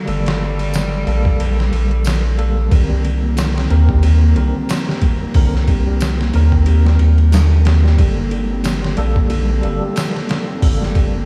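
A bright, nasal cello sits in the background at the very start, holding a G3 with light vibrato and tape echo before falling silent at 2.1 seconds, while a clean tine electric piano provides accompaniment through tremolo, tape echo and a low-pass filter that sweeps across the whole passage. This is a dark, hypnotic trip hop piece in G minor at 91 BPM, cut from a longer work, with a swung 16th-note feel moving from Gmadd9 to Cm7 and back. Up front, a round, deep analog bass anchors the low end, alongside a gritty, pitched-down sampler-style drum kit with a thumpy kick, medium-tuned snare, hi-hat and ride, overdriven and compressed with the air of a large room. A very quiet tambourine adds faint acoustic texture from 0.7 seconds. At 2.7 seconds a soft, felt-muted upright piano enters with intimate, short-sustained arpeggios fed through analog delay, set against a light digital reverb, small room ambience and a faint mains hum.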